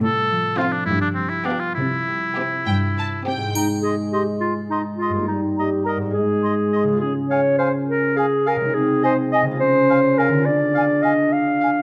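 A clear solo oboe and a mellow, ringing concert harp open this playful, whimsical film cue in a straight 6/8, over rich, close cellos on the bass, while a distant violin section carries the melody from 0.6 s against a second violin line and lush viola accompaniment in the background. At 3.5 s the harmony moves and the strings give way to dark, roomy French horns holding sustained chords, as an up-front clarinet with a soft attack takes a second line, a dry triangle adds a brief touch, and an airy flute group with a crisp attack floats in the distance. The magical, mischievous mood sits in a moderate scoring-stage reverb, captured with close, detailed microphones.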